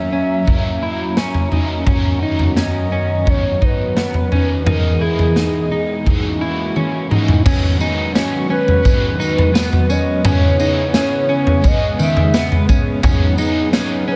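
A woody, hollow clarinet-like synth lead with vibrato carries the melody in this ethereal, dreamy dream pop excerpt at 86 BPM in a straight 4/4. It floats over a dark, detuned flute-like pad, a double-tracked overdriven semi-hollow guitar with harmonic tremolo, and a fingered, slightly broken-up electric guitar playing chorus-and-delay arpeggios, all moving from F#7 through Bmaj9/F# and Emaj7. A gritty, saturated garage drum kit with a punchy kick and rolled-off top sits up front from 0.5 seconds, and a drum fill at 6.8 seconds leads into a second section built on G#m7 and C#m7, all in light small-room reverb.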